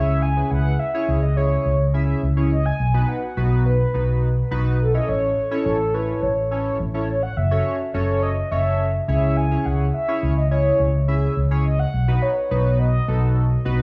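Dance-pop with an energetic, confident mood, moving at a straight 4/4 pulse through a short passage cut from a longer piece. A mellow, horn-like synth lead carries the melody, its soft-attack sawtooth tone sustained and touched with vibrato, chorus and a digital delay. Beneath it, a glossy, retro polysynth supplies chorused pulse-wave and sawtooth chords with pulse-width modulation, fast attacks and long sustains. A vintage muted fingered electric bass sits up front, round and foam-muted with a dark, amped character, and it is the loudest part. The chords cycle from C#m through B, A and F#m before returning to C#m and B, all in a dry studio sound with little reverb.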